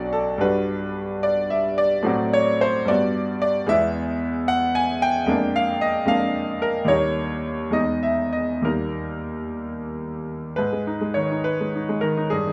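Classical romantic character piece for solo piano, lyrical and warm, in a rubato 6/8 at roughly 61-78 BPM counted in dotted quarters, where a bright, worn concert grand with deep bass sits up front in a moderate large-studio reverb, moving between Gmaj7 and F#dim/A before settling into G# minor from 3.7 s, then passing through E, A#7/E#, D#7 and Emaj7 to reach a G# minor chord as a new section opens at 10.6 s, all cut from a longer work.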